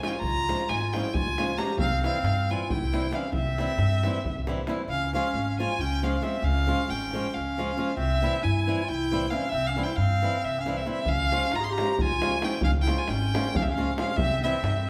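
In a straight 7/8 at 271 BPM counted in eighths, this fiery, virtuosic Balkan wedding-band excerpt sets a rich, biting bowed violin with vibrato and a smooth top up front on the melody. Beneath it runs a warm classical-style clarinet second line, bright, boxy fingerpicked flamenco guitar accompaniment and a woody, thumpy pizzicato upright bass. A deep davul sits in the background, drops out at 4.8 seconds and returns at 11.1 seconds, while the band plays together in a large, reverberant room over chords alternating between Db and C.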